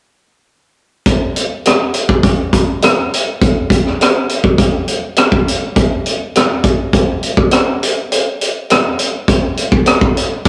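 A vintage acoustic drum kit comes in at 1.1 seconds with hi-hat, a punchy kick and rim clicks, setting a smooth, bittersweet soul groove in a straight 4/4. The kit sits up front with a warm, mid-forward tone and a rolled-off top, wrapped in a modest small-room reverb that gives this rough, warmly saturated rehearsal-room recording an intimate feel. Cut from a longer piece, the drums carry the groove into a new section at 5.8 seconds and play on until 10.5 seconds.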